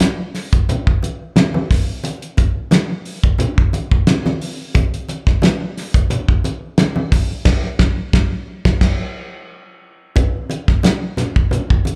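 A cloth-damped, thuddy drum kit sits up front in this playful, funky groove at 89 BPM in a straight 4/4, its fat snare, tight kick, hi-hat and dark crash cymbal carrying a rolled-off top. Low-tuned, ringing congas played with soft hands play alongside it from the start, thrown back by a slapback echo, and both parts run through the full 12 seconds of this cut from a longer piece. It sounds like a live club gig heard through the venue's PA with light reverb, and the band hits an accent from 7.5 to 10.2 seconds before a new section takes over.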